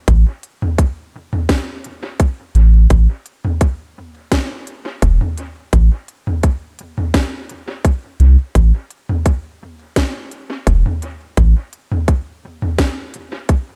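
Deep and hazy, this short ambient dub excerpt moves at 85 BPM in A minor with a light swing on the sixteenths. A soft, round sub bass with a mellow triangle-and-square character sits up front from the start, ranging from E1 to C2 before dropping out at 11.5 seconds. A tight, overdriven electronic kick and a produced kit of woody snare, crisp hi-hats and toms, the kit carrying dub echo and both roughened as if re-recorded in a small room, play through to 13.6 seconds in a dry, close mix.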